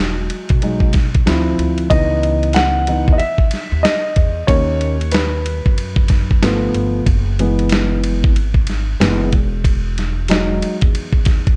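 Smoky and mellow, this jazz-hop excerpt at 93 BPM swings gently in 4/4 as an intimate, dark concert grand piano with audible action noise takes the lead over Emaj9, Dm9 and C#m9 harmonies, while a woody, growly pizzicato upright bass holds the low end and a dusty, compressed sampler-style kit enters at 0.3 seconds with a thumpy kick, medium-tuned snare, hi-hat and ride carrying vintage 12-bit grit, all set in light digital ambience with a dark production.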